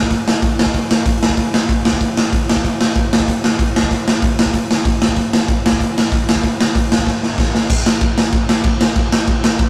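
This is a rough, dry rehearsal-room recording with a gritty tube-saturated edge, cut from a longer punk piece. A raw acoustic garage drum kit plays throughout at 190 BPM in a straight 4/4, carrying an energetic, rebellious charge. The kit sits up front with a punchy kick, a medium-tuned snare, hi-hat and crash cymbal. A bright stone room pumps around the drums, while their rolled-off top and saturation give them a warm, gritty tone. A drum fill arrives at 7.1 seconds and leads into a new section at 7.7 seconds, which drives on until the clip ends at 9.7 seconds.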